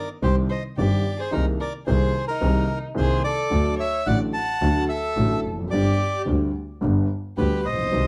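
A dark, intimate studio sound with moderate room reverb frames this brief, dramatic and tense tango fragment, taken from a longer piece, at 109 BPM in 4/4 with a rubato feel, moving from C minor through D to a suspended G that resolves to G. A reedy, up-front bandoneon carries the melody with plate reverb, while a violin adds an expressive second line with vibrato, portamento and a soft attack. Beneath them, a woody, slightly detuned upright piano with audible action noise plays the accompaniment and a bowed double bass with an earthy, airy tone holds the bass, both entering at 0.2 seconds.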